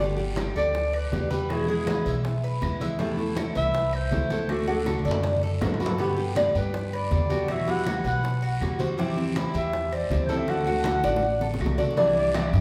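Relaxed and danceable, this Cuban son and guajira excerpt moves at 160 BPM in G major, with a breathy, intimate clarinet entering at 0.6 seconds to carry a whispered, jazz-style solo full of vibrato and scooped notes over chords such as Gadd9, Amadd9 and Emadd9. Beneath it, an up-front jumbo steel-string guitar with fresh strings picks out the accompaniment, a metallic, double-strung Cuban tres picks bright arpeggios, and a dark, woody pizzicato upright bass anchors the low end. In the background sit round, low-tuned bongos and cowbell and thin-skinned vintage congas, joined by a raspy guiro and very quiet woody claves, with drum fills near 4.9 and 11.0 seconds, all heard as a band playing live in one room bathed in large studio reverb.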